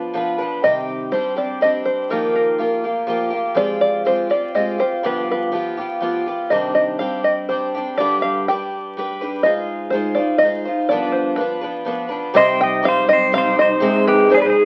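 Set in a 3/4 at 123 BPM with a straight feel, this wistful, intimate acoustic folk passage in C harmonic minor pairs a plunky, twangy fingerpicked open-back banjo melody with a woody, shimmering picked twelve-string guitar up front, over chords moving from Cmadd9 through Ebadd9 and Fmadd9 back to G7. At 12.4 seconds a bright, compressed pedal steel guitar enters up front with a slide second line and volume swells, while a dark bowed chamber string section adds soft-attack sustained chords with vibrato in the background, settling on Cm and Ab/C. Moderate large-studio reverb and the crackle of a very old 78 rpm record frame this fragment, cut from a longer piece.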